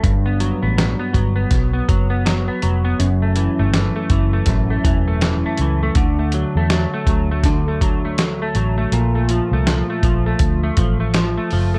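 A dark, lightly reverberant production frames this dreamy, laid-back bedroom pop excerpt at 81 BPM in 4/4, with a 60% swing on the sixteenths. Up front, a bright, clean semi-hollow electric guitar carries the chords through analog chorus, warbly pitch drift and plate reverb, moving from Gmaj7 to F#m7, D and a Bbmaj7(no3) at 8.9 seconds. Beneath it, a foam-muted, round vintage fingered bass sits under a gritty, compressed sampler-style drum kit with a thumpy kick, medium-tuned snare and hi-hat that sound re-recorded in a small room.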